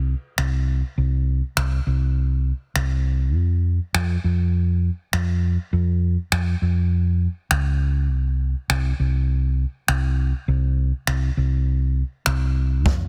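A dry, dense and heavily limited master frames this bittersweet yet driving dance-pop excerpt at 101 BPM in straight 4/4, where a dark, round and punchy fingered hollow-body short-scale electric bass, amped and up front with sidechain pumping, opens at 0.0 s and is joined at 0.4 s by an up-front acoustic jazz brush kit, natural in its small room, with a boomy kick, finger snaps and a softly clipped snare.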